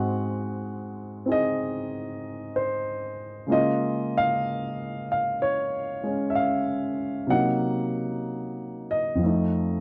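A slow swing at 63 BPM in 4/4 sets the pace, the eighth notes lilting with a 69% swing feel. This short excerpt of solo jazz, cut from a longer piece, carries a cool, swinging mood from start to finish. A lone grand piano carries everything, its warm tone sitting up front and ranging from F2 to Gb5. The harmony moves from Ab7 to Db6, then through Cm7b5 to F7 as the passage nears its close at 9.8 seconds. The sound is dry and close, in the manner of a 1970s studio recording, with the instrument tuned slightly high at A4 = 441 Hz.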